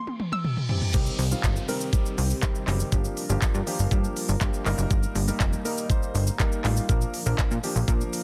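A dense, heavily limited modern mix with light reverb carries this bittersweet, driving dance-pop excerpt at 121 BPM: a hollow, nasal square pluck with chorus and tape echo flickers only in the first 0.7 seconds over a drum fill and an electronic reverse cymbal and downlifter, then a punchy, funky, sidechain-pumped analog bass and a dark, shimmering pulse-width pad arrive at 0.9 seconds alongside a sidechain-pumped baby grand piano and an up-front pop drum kit of knocking kick, crisp hats, handclaps, shaker, toms and crash with soft clipping on the snare, moving through C minor, G minor seventh, E-flat and B-flat.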